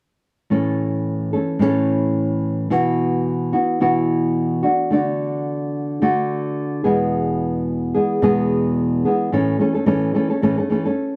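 A lightly swung 16th-note feel at 109 BPM in 4/4 carries this easy-going, sunny pop fragment in A major, cut from a longer piece and tuned a touch below standard pitch. A lone nylon-string guitar, dark and deep with a thumb-plucked classical tone, sits up front from 0.5 to 11.2 seconds, moving through A, Bsus4, D and E before landing back on A as a new section begins at 9.3 seconds. The sound is dry and close in the manner of a 1970s studio, with a moderate, short booth ambience around the guitar.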